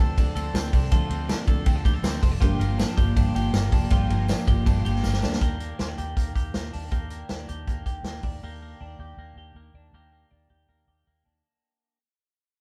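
Jangly indie pop at 160 BPM, bright and breezy, cut from a longer piece, where a clean, compressed twelve-string electric guitar plays arpeggios to 12.0 s over a round, foam-muted vintage electric bass and an up-front drum kit with a punchy kick and a rolled-off top, while a full-bodied jumbo acoustic guitar with finger squeak, a very quiet woody, boxy upright piano and a jingly tambourine fill the opening over Dm7 and Gm7 until a drum fill leads at 5.4 s to an Ebmaj7 fade-out, all in a live room with moderate reverb.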